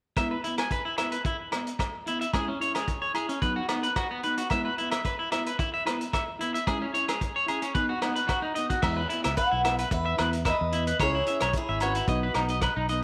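A bright, twangy electric guitar sits up front, picking arpeggios with a slightly broken-up edge and a tape echo trailing each note, giving this short highlife excerpt its carefree, joyful lift. Beneath it, a mellow electric guitar plays dark, clean fingered accompaniment with a subtle chorus, while a vintage drum kit supplies a punchy kick, rim clicks, hi-hat and dark crash cymbals with a rolled-off top, and ringing agogo bells sit close and dry in the background. The harmony cycles through E5, C#m and B in a straight four-beat groove. At 8.8 seconds a fingered electric bass enters, round and punchy in its low register, and at 9.4 seconds a picked, boxy old ladder-braced acoustic guitar takes up the melody, its finger squeaks audible and its notes carried by tape echo. A moderate echo chamber reverb wraps the ensemble in an inviting studio glow.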